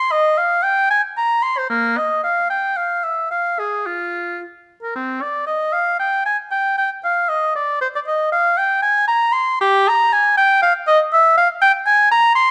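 This is a baroque-style classical fantasia for unaccompanied oboe, grave and introspective in mood. The oboe plays alone for the full 12.5 seconds, set up front in a freely flowing rubato in triple metre, and its line ranges from Bb3 up to C6. Its tone is clear, touched with a light vibrato and shaped in a classical manner. A moderate stone-room reverb gives the solo a sense of space, while the overall production leans dark and warm. The opening idea returns at 5.0 seconds, and the passage is cut from a longer piece.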